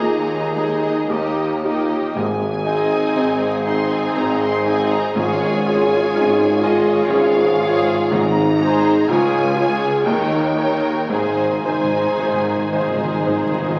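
Classical romantic movement for piano and orchestra, lush and passionate in a rubato triple metre, with a clear baby grand carrying the melody from the background while a vibrato-rich violin section sings above it over a second violin line, close viola accompaniment, mellow sustained French horn chords and a bass of distant tuba, intense cellos and very quiet double basses, as hard-mallet timpani enter at 2.2 s and play a fill from 11.1 s, all heard through wet scoring-stage reverb and the crackle of a very old 78 rpm record in this fragment cut from a longer piece.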